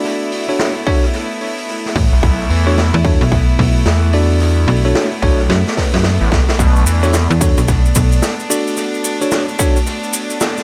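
A swaggering, funky glitch hop excerpt at 110 BPM in B minor, swung on the sixteenths, opens on a Bm9 chord. A rich, floating chamber string section holds sustained chords and a bell-like tine electric piano plays stabs through tape echo, both pumping under sidechain, while a distant, roomy big-band drum kit of hi-hat, rim click and snare swings behind them. A distorted electronic kick enters at 0.9 s. From about 2 s a snappy, metallic FM slap bass and a gritty, nasal driven synth bass sit up front, with a drum fill and a very quiet electronic swell near the middle. Grainy maracas join at 6.6 s, and the echo-heavy mix is set in a small room.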